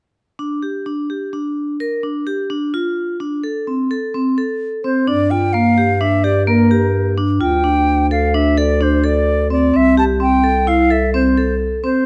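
Set in an uneven 5/4 at 128 BPM with a straight feel, this urgent, hypnotic contemporary chamber piece in G dorian opens at 0.4 s with metallic, ringing vibraphone arpeggios struck with hard mallets, played dry with the motor off and sitting up front. An airy silver concert flute enters with the melody at 4.8 s, tongued, unsteady and touched with vibrato, and a dark bass clarinet follows at 5.1 s with a soft-attack bass line in a classical style as the harmony moves through Gm7, D5 and Am7/C. Close, detailed microphones and light reverb keep every part vivid in this passage cut from a longer piece.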